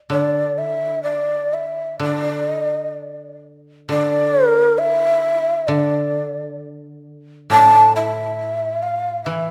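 Rubato and unhurried, drifting around 62-69 BPM in 4/4, this short excerpt of Japanese traditional chamber music in D hirajoshi carries a solitary, meditative mood. An end-blown bamboo shakuhachi sings the melody up front between D5 and A5, its breathy, hollow tone marked by vibrato, a crisp chiff on each attack and rolled-off highs. Beneath it, a bright, woody koto plucked with fingerpicks supplies a quieter accompaniment low in its range, both parts sounding from 0.1 to 9.5 s in a moderate recital hall reverb.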